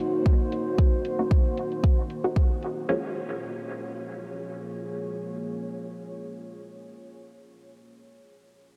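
This is a hazy, hypnotic slice of dub techno, cut from a longer piece and soaked in a dreamy, reverb-heavy mix with a huge ambient tail. A deep, moody pad holds sustained chords throughout, its detuned sawtooth and sine layers with a sub octave sitting up front, softened by chorus and pumping against the kick. The layered electronic kick drives the beat prominently, while dark, low-passed hi-hats hover faintly behind it, and both drums fall away by 2.7 s. A muted, detuned chord stab with a fast, plucky attack enters at 1.2 s, carrying phaser, dub echo and sidechain pumping, and a filter sweep shapes it through the opening section. The harmony moves from Ebm7 to Bbm7 at 2.9 s, leaving the pad and stab to drift in the reverb.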